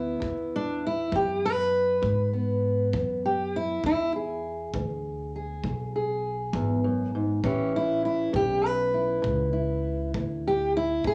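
Acoustic country blues in a laid-back, gritty 12/8 at 66 BPM, this short cut from a longer piece sits in E mixolydian, moving from E7 to A7 at 7.4 seconds. A dark, up-front fingerpicked steel-string acoustic guitar carries the melody with a cassette-tape grain, over a woody, thumpy pizzicato upright bass. A distant, roomy kick drum played with brushes enters at 0.2 seconds, and the whole has the feel of a home cassette recording in a small room.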